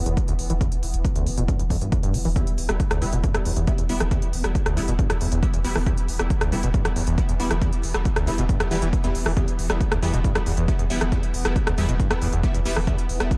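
Hypnotic and relentless, this driving peak-time techno cut runs at 137 BPM in straight 4/4, sitting on E minor throughout. A punchy, layered electronic kick leads the mix alongside smooth hi-hats and rim clicks from the techno kit, with the hats breathing under sidechain pumping. Beneath them a deep, thick sine sub bass holds E1 with saturated overdrive and a low-pass filter, while a squelchy, gritty sawtooth acid bass riffs between D2 and G3, its resonant filter swept across the whole passage and colored by distortion, lush chorus and tape echo. A swarming, tense granular drone hovers in the background between E3 and B3, slow to bloom and evolving. At 2.4 seconds an aggressive, detuned unison rave stab enters between G3 and E4, its moving notch smeared by chorus, reverb and tape echo. The overall production is dark and dry, with the pumping giving the layers a constant pulse.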